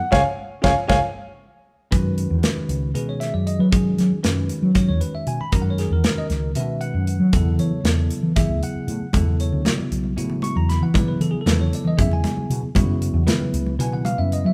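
A dark, mellow baby grand piano opens with a brief melody up front over a bell-like tine electric piano and a woody, round fretless bass, while a punchy, polished drum kit and thin-skinned congas join in a band accent and the electric piano adds a fill, before the piano drops out at 1.0 s and this funky, bright piece of electric jazz fusion settles into a straight 7/8 groove on suspended chords, with the congas returning in the background at 9.1 s, the band playing live together in a moderate stone-room reverb.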